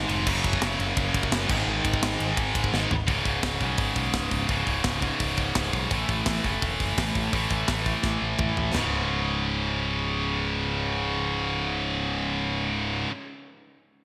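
A straight 4/4 pulse at 169 BPM drives this relentless, dark heavy metal excerpt in C# minor, with a tight kit of kick, snare, hi-hat, toms, ride and crash, treated with gated reverb, playing fills at 2.7 and 8.0 seconds before dropping out at 8.8 seconds. Two bright, high-gain distorted electric guitars pound out up-front picked riffs, while a growling, overdriven picked bass rumbles beneath them. The chords move through F#5, G#5, C#5 and A5 in a bright 1980s-style digital production with a lush hall ambience.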